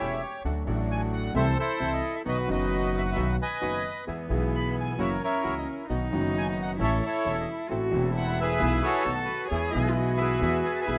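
Tango in E major at 132 BPM with a rubato feel, nostalgic and passionate, heard as a short cut from a longer piece in a rough home demo mix with studio ambience. An up-front, reedy bandoneon carries the melody over a clear, boxy upright piano with audible action noise and long sustain, a woody pizzicato upright bass on steel strings, and a second bandoneon placing bright stabs in the background. At 4.1 seconds a single bowed cello enters with a rich, expressive second line, played with vibrato, portamento and a soft attack.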